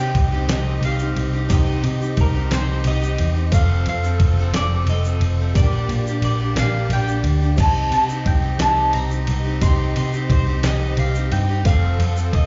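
A round, foam-muted electric bass sits up front in this wistful, dusty folk and heartland rock excerpt in C dorian, moving at 59 BPM in a straight 6/8 over a Cm, F and Bb6 progression, while a mellow double-strung mandolin carries the melody with slapback echo. Bright, freshly strung picked acoustic guitar and a reedy electric piano with fast tremolo fill in the accompaniment, joined in the background by a shimmering musette accordion holding sustained chords and a grainy egg shaker that plays from 0.5 to 12.3 seconds. A gritty, compressed sampler-style drum kit with a thumpy kick and fat snare comes in at 0.1 seconds, and the whole performance sounds like a live club gig heard through the venue's PA, with small-room reverb and a muffled top end.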